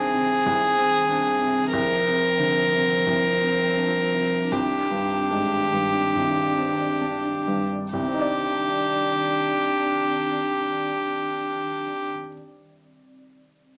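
A fragile, melancholic neoclassical piece for piano and strings opens with a rich, up-front solo violin carrying the melody over a dark, very quiet cello line, an intimate sul tasto viola, the mellow accompaniment of a felt-muted upright piano with audible action noise, and an ethereal background pad tinged with chorus and phaser, set in a wet studio reverb as the rubato pulse slows until 7.9 seconds, with the piano playing alone from 12.1 seconds, when the other parts stop, until 13.8 seconds.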